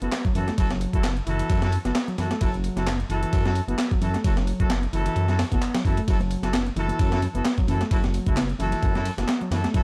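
A dry, gritty recording with a cassette-tape grain opens this funky breakbeat excerpt, moving at 131 BPM in 4/4 with a light 16th-note swing and resting on a single F#m7 chord in F# minor. Up front, a compressed, pitched-up sampler-style break kit drives the groove with a thumpy kick, a medium-tuned snare and ride cymbal, while a layered electronic house kit adds handclaps and hi-hat from the background, sounding as if re-recorded in a large room. Beneath them, a deep, rumbling detuned saw bass beats and growls with a saturated edge, and an overdriven picked electric bass plays a round, punchy riff higher up, colored by tube saturation and analog delay. A distant, roomy horn section punctuates the groove with stabs through its own analog delay. At 6.2 seconds, ringing, high-tuned congas slip in very quietly, played with soft hands and heard close, until 9.6 seconds.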